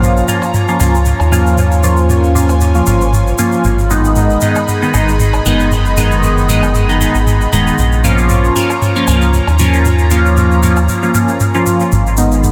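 A meditative, hazy dub techno passage opens with everything at once: an airy, breathy pad holding sustained chords through chorus, up-front stabs from a juicy, resonant polysynth with filter sweeps, phaser and dub echo, and a round, deep analog bass. Dry electronic toms and cowbell with dub echo sit in the background beside a grainy tube shaker, all riding a lightly swung sixteenth-note feel. A brief break arrives at 10.9 seconds before the groove returns at 11.9 seconds, under light digital ambience and a dense, heavily limited master.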